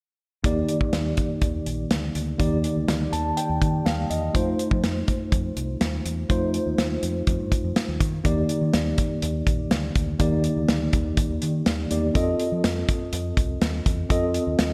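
1980s-style pop in a straight 4/4 groove, this short excerpt cut from a longer piece feels nostalgic and uplifting. A mellow tine electric piano carries the accompaniment up front, its clean tone heard through built-in speakers, and it plays a fill from 2.9 to 4.3 seconds. A fingered electric bass, round and punchy with a direct, amped sound, holds the low end, while a modern studio drum kit of hi-hat, kick and snare sits up front with a dark, smooth character, a tight kick and a rolled-off top. All three parts play together from 0.4 seconds to the end, moving between Ebmaj7 and F7 chords, with a brief break in the harmony just before a second section begins at 8.2 seconds. The bright digital production is bathed in a moderate, lush hall reverb with a hint of small-room ambience.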